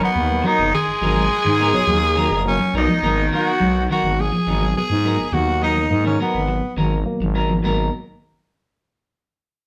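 A growling tenor saxophone leads this funky, hypnotic afrobeat excerpt at 104 BPM in G# minor over a G#m9 chord, shadowed by a gritty, punchy baritone saxophone that drops out at 4.1 s and a very quiet, lightly vibrato trumpet, while a thick FM bass sits up front beneath picked stabs from a clean semi-hollow electric guitar, background arpeggios from a slightly broken-up electric guitar, and a worn, reedy electric piano with fast tremolo that joins at 0.3 s, the band captured live together in one room with a wet studio reverb.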